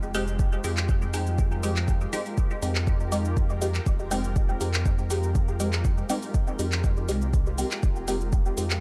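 A straight 4/4 pulse from a deep, up-front electronic kick and a tape-softened vintage rhythm box of cabasa, handclaps and metallic hi-hats drives this nocturnal, hypnotic dub techno excerpt, where a round analog bass and a cloudy, blurred granular pad pump under sidechain, muted, detuned chord stabs sit in phaser and dub echo over a held Fm9, and an eerie, very quiet inharmonic drone enters at 8.4 seconds just before the cut.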